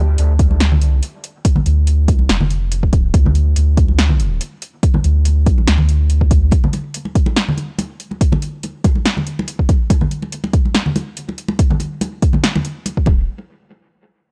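A swung, half-time 142 BPM groove in 4/4 drives this heavy, cavernous deep dubstep fragment in D minor, where a round, tube-saturated sub bass sits up front until it drops away at 6.5 seconds, briefly returning just before 13.3 seconds, an overdriven, deep electronic kick pounds alongside a layered deep house kit of punchy snare and metallic hats, and high-tuned, thick-skinned congas played with soft hands trail dub echo, all captured in a dry, gritty cassette-tape sound.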